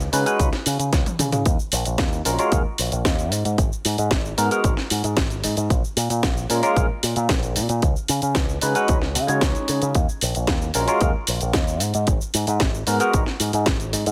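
A bright, barky tine electric piano with phaser, tape echo and sidechain pumping carries this sleek, cosmic nu-disco piece in G# dorian at 113 BPM, moving through C#9sus4, D#m11, G#m9 and A#m7 over a punchy picked electric bass with an envelope filter, a tape-warm house kit with a cracking snare, hi-hat, shaker and toms that plays a fill at 0.9 seconds, and a layered electronic kick entering at 0.4 seconds, every part up front in a digital ambience.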